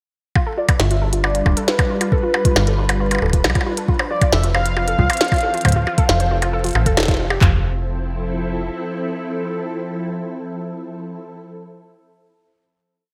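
A bright, 1980s-style digital production with light reverb frames this short, playful and wistful IDM piece in straight 4/4. From 0.4 seconds a glitchy, tape-warm electronic kit drives the groove. One layer sets a deep kick, floor tom and clap in a broken pattern up front, while another adds clicky closed hats, a tiny snare and high woodblock blips in an ever-changing, glitched beat bathed in gated reverb. Beneath them a metallic FM bass with a fast, decaying attack plays a dub-style line, and a warbling, lo-fi pluck with chorus and delay cycles a 5-step sequence that drifts against the bar. A velvety, full-bodied lead with chorus, delay and vibrato carries a free melody that never repeats a motif, while a silky string machine holds slowly shifting chords through a phaser and ensemble chorus as the harmony moves from G7 to Fmaj7. At 7.4 seconds the groove gives way to a final chord, and the strings linger until 11.4 seconds.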